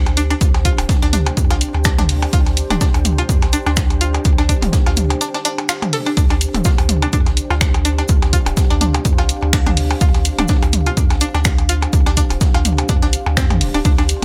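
Dry and close, this cool, clinical minimal techno excerpt at 125 BPM in D minor rides a swung 16th-note groove built from an up-front punchy electronic kick, an analog drum machine's finger snaps and hi-hat, tape-warmed electronic blips, claves and toms trailed by digital delay, and a very quiet, dark acoustic jazz kit of hi-hat, shaker and high-tuned snare, beneath a mellow sine sub bass and a moody, detuned sawtooth pad with chorus and reverb, both sidechain pumping alongside a bright, twangy string-like resonator pluck riff with phaser and delay, with a brief break from 5.2 to 6.2 seconds.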